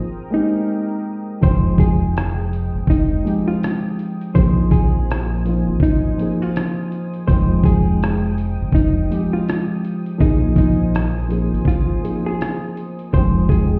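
Heard muffled as if through a wall, with a faint stone-room reverb, this melancholic, nostalgic lo-fi hip hop excerpt moves at 82 BPM in 4/4 with a swung sixteenth-note feel in F minor. It opens with a short break in which a hollow-body jazz guitar, clean, picked and dark, carries the melody through a low-pass filter and analog delay, over a smooth, detuned sawtooth pad that sits softly in the background with chorus and a slowly released, sustained tone. At 0.3 seconds a felt-muted upright piano joins as accompaniment, its thick-felt, mellow, intimate voice placed up front and coloured by cassette tape and a low-pass filter. At 1.4 seconds a deep, round, fingered dub bass and a gritty, compressed sampler-style drum kit arrive together, the kit playing hi-hat, rim click and a thumpy kick with the character of a small room. The harmony settles into a gentle swing between Fm9 and Bb9sus4 chords after the opening Abmaj9.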